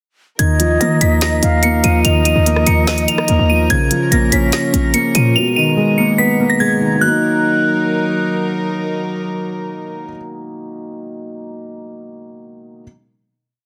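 A dense, heavily limited modern mix sits in light reverb and small room ambience, opening this eerie yet hard-hitting trap piece in Eb minor at 145 BPM with a half-time feel. A glassy, crystalline FM synth bell carries the looping melody high above, its fast-attack, decaying notes treated with chorus, phaser and delay, while a concert flute with vibrato adds a sparse, expressive counter-melody through delay until 3.7 seconds. Underneath, a felt-muted upright piano plays a rising and falling eighth-note arpeggio up front, soft and intimate, with its action noise audible, and a chamber string section bowed sul tasto holds a floating, pure-toned pad. The punchy 808-style bass delivers long sub-bass notes with a noise layer, and the electronic trap kit drives a half-time beat with crisp hats, fast hi-hat rolls, rim clicks and a woody snare, both dropping out after about 5 seconds. From 7.0 seconds the piece settles on a final Ebm chord, where the strings hold until about 10 seconds and the piano then rings on alone to 12.8 seconds.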